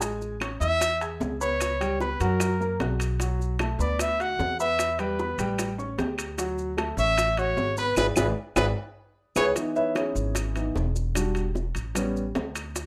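Afro-Cuban jazz with a fiery, sultry mood, cut from a longer piece and set in a straight four-four feel. A mellow, punchy trumpet leads up front from 0.6 s, forceful and smooth on top, with scooped notes in a jazz solo style, over a warm, present grand piano and an up-front pizzicato upright bass with a woody, steel-strung tone. Round, low-tuned bongos played with soft hands and woody claves in a small room sit in the background, while grainy maracas stay close and dry and metal-shell timbales ring out in a live room. The band hits a shared accent with a drum fill before the trumpet drops out at 9.5 s, and the grand piano then takes a solo as the harmony turns minor. The rough home-demo mix carries a wet studio reverb.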